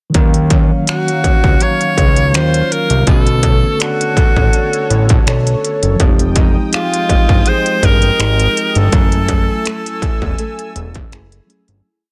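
A slow R&B beat with skipping kicks at 82 BPM, its distorted kick, smooth hats and finger snaps up front, carries this longing, late-night contemporary R&B piece, where a fat, nasal analog bass slides through syncopated lines beneath a clean tine electric piano's rootless held chords, a woody, boxy fingerpicked acoustic guitar with digital delay, and a lush, airy pad pumping with chorus and tremolo, while a bright alto saxophone with vibrato plays motif-based call phrases from 0.9 s over chords moving from Ebm9 to Gbm9 before the fade-out from 8.9 s.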